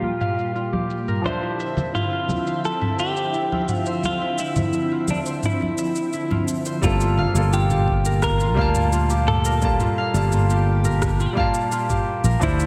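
Soaked in lush hall reverb and softened by a low-pass filter, this dreamy, smooth sunset chillout excerpt in G dorian at 86 BPM drifts over Gm9 and Dm9 chords as a clean, picked electric guitar carries the melody with analog delay alongside a clear, polished baby grand piano, bright ringing concert harp arpeggios and a silky, vintage string machine washed in phaser and ensemble chorus, while thick-skinned congas and a tape-warm R&B kit of rim click, shaker and toms keep time until the congas drop out at 6.4 s and a growly, up-front fretless bass and a deep, layered electronic kick arrive at 6.8 s.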